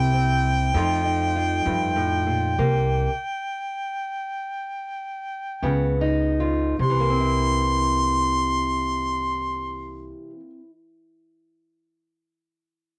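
In a straight 12/8 feel, this rollicking, gritty acoustic country blues fragment puts a clear, close-miked harmonica up front with a jazz-tinged solo melody of light vibrato and scooped notes, over a boxy, dark fingerpicked parlour guitar with a cassette-tape tint and a woody, thumpy pizzicato upright bass on gut strings, the music slowing from 1.4 seconds and halting altogether between 2.6 and 5.6 seconds before carrying on, all within moderate booth ambience on a homemade cassette recording.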